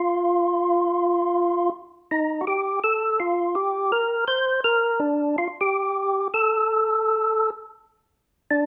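A fat, lightly overdriven tonewheel organ sits up front, its percussive third-harmonic attack and vibrato spinning through a slow rotary speaker as it carries a bluesy solo line in the middle register, from D4 to C5. The jazz feel swings at 165 BPM in 4/4, and the organ plays by itself across the full 8.7 seconds of this clip from a longer piece. A moderate studio reverb gives the organ a touch of room.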